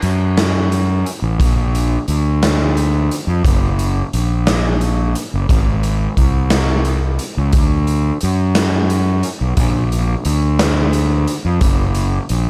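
A dry, echo-heavy mix features two up-front parts, giving this short psychedelic rock passage from a longer piece a kaleidoscopic, trippy mood. Set in a slow 6/8 at 59 BPM counted in dotted quarters, with a straight feel and tuning at A4 = 444 Hz, it runs as a single section of about 12.5 seconds. A fingered electric bass, overdriven into round, punchy fuzz, holds the low end between F#1 and F#2 throughout. A raw garage drum kit of hi-hat, punchy kick and medium-tuned snare, captured in a bright stone room, plays from the start until 12.4 seconds, its saturated, gritty sound carrying a rolled-off top and washed through analog delay. Together the fuzzed bass and the echoing kit make a heavy, hazy groove.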